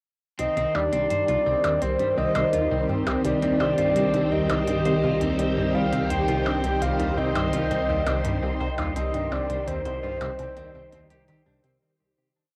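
Cosmic and mysterious, this short piece of ambient, sequencer-driven space music moves at 84 BPM in a straight 4/4 in C minor, built on a tight, detuned sequenced synth riff whose 5-step loop drifts against the bar over a deep, round sub bass that fades in from 0.4 seconds. Up front, a swirling, phased string machine holds slowly shifting chords while a breathy, flute-like lead with vibrato sings a free melody, and a clean semi-hollow electric guitar picks a 7-step arpeggio loop in the background beside clicky, overdriven hi-hat and woodblock blips and a very quiet, bubbling, resonant texture on a held high note. The home cassette recording sits in a wet ambience and fades out from 8.0 to 11.8 seconds.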